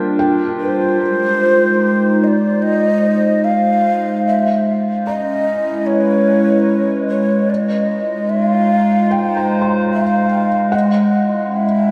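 Ambient music at 74 BPM in 4/4 with a straight feel, this serene, peaceful passage is cut from a longer piece. A breathy, hollow shakuhachi carries the melody up front, its bamboo tone tongued with a soft chiff and rolled-off highs, trailed by a diffuse ambient delay. Beneath it, a warbly, tape-like pad holds sustained chords with a nostalgic lo-fi character, slow attack, chorus and its own reverb. A felt-muted upright piano plays intimate arpeggios through diffuse delay, fading in from 1.0 s with audible action noise. A very quiet, glassy harmonics texture drifts in only for the opening second. The harmony moves from Gm7 to Fm7 and Dbm7, returns to Fm7, then arrives on Dbm, all inside a dreamy mix soaked in a lush hall reverb.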